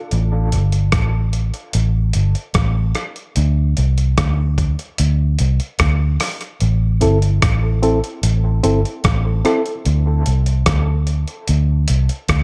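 A dark, round electric bass sits up front in this hypnotic, heavy dub reggae fragment, its foam-muted, amped tone punchy and low as it moves through Gsus2, Csus2 and Am in a straight 4/4. Beside it, a sampler-style drum kit of hi-hat, thumpy kick and rim click sounds gritty and compressed, carrying the character of a re-recording in a large room while staying close and present. At 7.0 seconds a reedy, worn electric piano slips in with brief stabs, slightly out of tune and heard through its built-in speakers, bathed in spring reverb and dub echo before dropping out at 9.7 seconds. The overall mix leans heavily on echo while otherwise staying dry, and the passage is cut from a longer piece.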